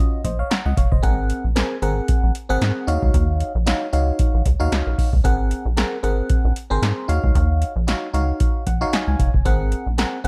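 Slick and funky, this short excerpt of early-eighties boogie funk rides a 114 BPM groove in 4/4 with a light swing on the sixteenths, sitting in Eb dorian as the harmony rocks between Ebm9 and Ab9. A rubbery square bass enters at 0.2 seconds, up front and bouncy, its hollow, wave-folded tone shaped by a resonant filter pluck and a moving notch that keeps the low end dark and elastic. Alongside it from 0.2 seconds, an electro analog drum machine pairs a deep kick and punchy snare with metallic hats and handclaps, the snare, clap and hats set in a short room and the whole kit carrying a tape-kissed glow. A glassy FM electric piano, there from the very start, supplies the chords with a bell-like attack and a noise layer, treated with chorus and phaser, and it adds a fill from 8.4 to 9.5 seconds. The production is dark and enveloped in digital ambience.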